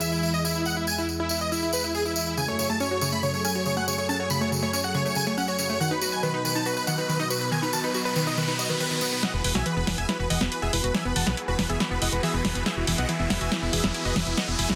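A huge, euphoric supersaw lead sings the melody over a lush, thick unison pad and a jingly, distant tambourine, opening this uplifting trance excerpt at 140 BPM in E major, with the pad undergoing a filter sweep and an analog pluck adding round, ring-modulated arpeggios from 2.4 seconds. A background riser enters at 6.8 seconds, and at 9.2 seconds the tambourine gives way to a punchy, tape-warm analog drum machine with filtered snare and hi-hats, playing a fill as a dark, round FM bass joins. The soaring build-up sits on an Eadd9 chord in a dense, heavily limited mix with light reverb.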